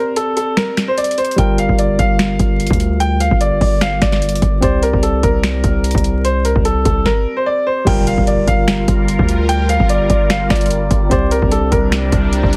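Menacing and hard-hitting, this half-time trap cut at 148 BPM in G minor pairs a clear, up-front concert grand piano melody with a barky, lightly overdriven tine electric piano played through a combo amp, moving between Csus2 and Gm7. A booming analog drum machine with a deep kick, crisp snare, metallic hats, finger snaps and crash enters at 0.2 seconds, and the punchy, heavy 808-style bass lands at 1.4 seconds after the opening break. A very quiet electronic impact marks the shift at 7.9 seconds, and a slow-attack, detuned sawtooth pad with chorus and a filter swell rises in at 8.6 seconds, all set in a dry, heavily compressed radio sound with vinyl crackle.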